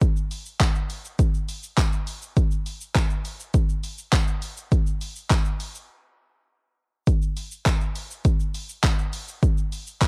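Dry, cassette-toned home recording of a summery, upbeat pop groove at 102 BPM in a straight 4/4, where an up-front, layered electronic deep house drum kit with a punchy kick, handclaps, hi-hat and shaker drives the cut, joined from 0.6 seconds by a very quiet, jingly acoustic tambourine in a small room, with a brief break from 5.9 to 7.1 seconds before the beat returns.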